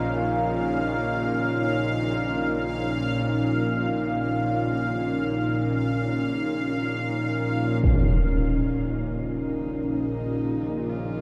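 A tense, string-like drone with a sawtooth edge and vibrato sits up front over a deep, moody pad holding a B-flat minor chord, while a bubbling, resonant texture of random filter steps hovers above, all sinking into a huge, dark reverb in this ominous, vast dark ambient piece in free time. At 7.8 seconds a huge, muffled impact lands and a husky horsehead fiddle enters in the background, its expressive bowed line gliding with vibrato through a diffuse ambient delay until the cut at 11.2 seconds.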